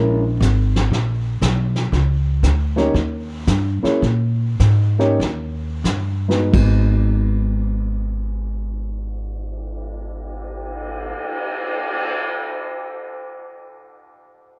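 Dry and dark in its production, this cool, swinging jazz piano trio piece in G# minor moves in a swung 4/4 between 83 and 119 BPM, slowing from 1.9 to 6.5 seconds. A mellow, smooth vintage concert grand carries the melody over a woody, thumpy pizzicato upright bass on gut strings, both up front from the opening. A brush kit joins at 0.4 seconds with a punchy kick, crash and cymbal swell, sounding distant and roomy with a rolled-off top, as the chords pass through A#m7b5, D#7 and G#sus24 before arriving on G#m7 at 6.5 seconds.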